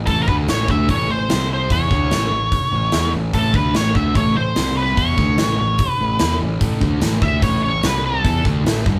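A dark, picked octave-fuzz lead guitar sits up front, its wah and distortion carrying the melody from 0.1 to 8.4 seconds in this gritty, raunchy fragment of blues rock power trio and southern rock at 147 BPM in a straight 4/4. Beneath it, a double-tracked fuzz guitar drives the riff, a round, overdriven picked bass anchors the low end, and a big acoustic rock kit with a punchy kick and a medium-tuned snare pushes forward. The harmony moves between A and C5, closing on A5, and the group sounds like a band playing live in one room with light reverb.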